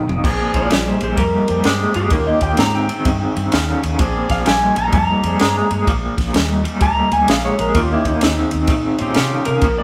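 Electric blues shuffle at 128 BPM in Bb mixolydian, swaggering and laid-back, with a swung feel and a drum fill opening the cut before the band settles over Bb9 and Eb9 chords in a large, moderately reverberant room. A bright, twangy guitar through a small old amp plays a tremolo-tinged riff up front, joined by a round, foam-muted vintage bass, a compact cocktail kit with a punchy kick, high-tuned snare and dark cymbals, and a smooth-topped horn section adding jazz-style stabs in the background. From 0.6 seconds an electric slide guitar, compressed and slightly broken-up, takes a solo through to the end.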